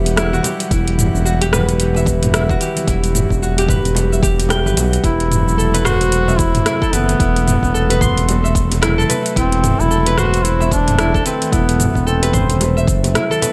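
A swung sixteenth-note groove in 4/4 drives this hypnotic organic downtempo passage, cut from a longer piece, with an overdriven electronic kick and a deep house kit of metallic hats, rim click, shaker and toms, both re-recorded in a large room, over very quiet, soft-handed bongos and congas. A smooth, up-front synth bass with tube saturation anchors ringing, fingerpicked Celtic harp arpeggios touched by tape echo, while an airy, breathy pad with chorus and sidechain pumping sustains chords in the background. At 5.0 seconds a clear duduk enters as the solo voice, singing a folk-style melody with vibrato and scooped notes, colored by 12-bit sampler grit and tape echo, all in light reverb.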